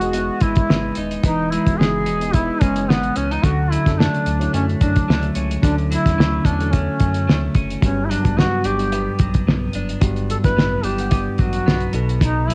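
Indie pop with a bedroom pop haze, this nostalgic, dreamy excerpt moves at 109 BPM in 4/4 with a gentle sixteenth-note swing, cut from a longer piece and running about 12.5 seconds. A duduk carries the melody up front from start to finish, its soft attack, vibrato and scooped notes giving a folk-style voice, colored by analog chorus, analog delay and cassette tape. Beneath it, a clean, dark, picked electric guitar wavers with subtle chorus and warbly pitch drift, while a reedy, worn electric piano sits in the background, slightly out of tune as if heard through built-in speakers. A round, deep analog bass holds the low end with a fast attack and sustained, evolving tone, and a cloth-damped drum kit of hi-hat, kick and snare sits up front with a fat snare, tight kick and a saturated, gritty, muffled top. The chords drift from Emaj7 through Dmaj7 and Gmaj7 before landing on B7 at 11.9 seconds, all wrapped in light small-room reverb as a home cassette recording.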